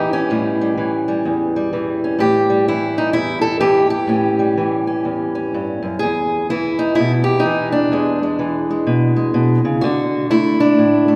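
Acoustic country blues with a rollicking, gritty mood, this short cut from a longer piece features a lone fingerpicked steel-string parlour guitar, dark and boxy and up front, swinging at 126 BPM in A mixolydian over A7, E7 at 6.0 seconds and D at 9.8 seconds, all bathed in a long church reverb.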